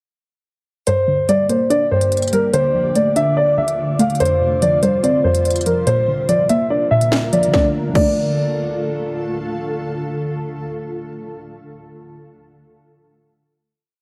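Drill hip hop at 144 BPM in a half-time feel, menacing and ominous in D minor, where a dark, boxy grand piano loops a filtered, delayed melody up front over a warbling, lo-fi pluck arpeggio with chorus, a blurred granular cloud pad, and an electronic drill kit of hard-clipped kick, sharp snare and crisp skipping hats with fast rolls, the kick dropping out from 6.7 to 7.5 seconds before the drums stop at 8.1 seconds and the pluck and pad carry a final D minor chord to the close.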